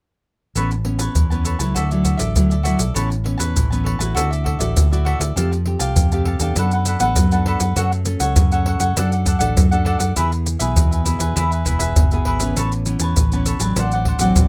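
This rough home demo has a light reverb, with a close, dry percussion section up front. It is a sunny, joyful samba and choro fragment in A major at 100 BPM in a straight 4/4, cut from a longer piece, and every part plays from 0.6 to 14.5 seconds. Maracas, a tight surdo and pandeiro drive the groove, while a fingered electric bass adds a growly, punchy, amped low end. A crisp, picked cavaquinho sits above a full-bodied, fingerpicked nylon-string guitar with a deep classical tone and audible finger squeak. The harmony moves through add9 chords on A, D and F, then through F#m, D and E, before returning to Aadd9 at 12.6 seconds and closing on D7/A.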